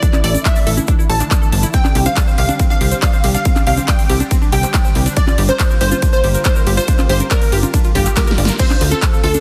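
A straight 4/4 pulse at 140 BPM drives this emotional, bittersweet uplifting trance passage, where a punchy electronic kick (dropping out at 9.1 s) and a big-room dance kit of huge snare, metallic hats, handclaps, congas, ride and crash, with a drum fill at 8.2 s, pump beneath a lush, detuned unison pluck melody shadowed by a catchy, phased plucky unison lead with 12-bit sampler grit. Meanwhile a round analog pluck arpeggiates, a silky analog string pad sustains Asus4, Csus2, Gm7 and Dm7 chords, a grainy tube shaker sits in the background, and a tight sawtooth sequencer bass joins at 0.2 s, all under light reverb and a dense, heavily limited master.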